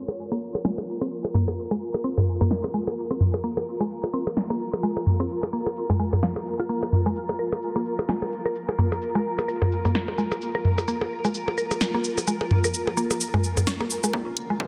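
A cloudy, blurred granular pad opens this cool, quirky minimal techno passage, pumping under its own built-in reverb as a woody, round mallet-like synth pluck joins with chorus and tape echo. Up front, a punchy analog drum machine plays swung cabasa, hi-hat and snare through a long filter sweep, alongside tape-warm electronic percussion blips and toms. Only near the end, at 14.1 seconds, does an electronic kick drum arrive, followed at 14.3 seconds by a faint riser in the background, all set in a lush hall inside a dense, heavily limited mix.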